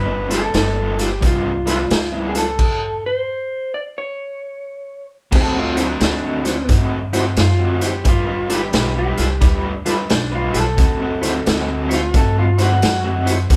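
A swung 4/4 shuffle at 88 BPM drives this rollicking yet laid-back electric blues, cut from a longer piece, where a gritty, saturated garage drum kit with dark cymbals and a punchy kick sits up front beside a woody pizzicato upright bass, an overdriven garage guitar riff shimmering with tremolo, a percussive tonewheel organ with key click and a slow rotary speaker, and a slightly broken-up, lo-fi guitar through a small old amp carrying the melody, as the band hits a stop at 2.6 seconds before a clean electric guitar solo comes in at 5.3 seconds across G7 and D7 changes, all captured live in one room with moderate reverb.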